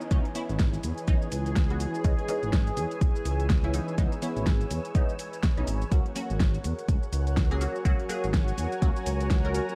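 Close and dry under a bed of vinyl crackle, this hypnotic deep house excerpt at 124 BPM in C# dorian swings its 16ths as an up-front deep kick and a sawtooth-and-square gliding synth bass anchor a layered kit of fat snare, metallic hats and shaker. A muted, detuned dub chord stab with phaser and echo and a silky vintage string machine pump beneath them, moving from C#m9 to F# at 5.9 s. A very quiet downlifter ends at 2.0 s, while a blurred granular cloud pad drifts in at 1.0 s.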